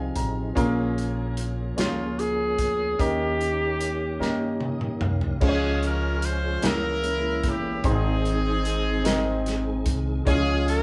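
Reverent and jubilant, this slow gospel passage in 6/8 at 50 BPM opens with a woody upright piano fill over a mellow tonewheel organ, its slow rotary speaker and chorus vibrato bringing key click and a dark, round glow, while a pizzicato upright bass and a warm, up-front soul drum kit with a tight kick settle in beneath. A breathy, whispered tenor saxophone sings an intimate line with scooped notes and subtone from 1.8 seconds, then drum and organ fills at 4.2 seconds lead to a smooth, up-front horn section that carries the melody from 5.4 seconds. The chords travel from Fm7 through Bbm7 and Eb7 to Db, Dbm6 and Ab, all in a large studio room where the band plays live together.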